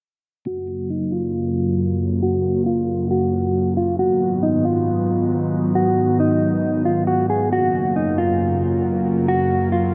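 Hip hop at 136 BPM in a half-time feel, this blissful, dreamy excerpt in F# major drifts from F#maj7 to G#m7 and back. A mellow, dark electric guitar, clean and fingered, carries the melody up front through a low-pass filter and tape echo, while an airy, breathy pad with a detuned, chorused shimmer holds sustained chords in a lower register. Both parts play from 0.5 to 9.9 seconds under a filter sweep, set in a huge ambient reverb.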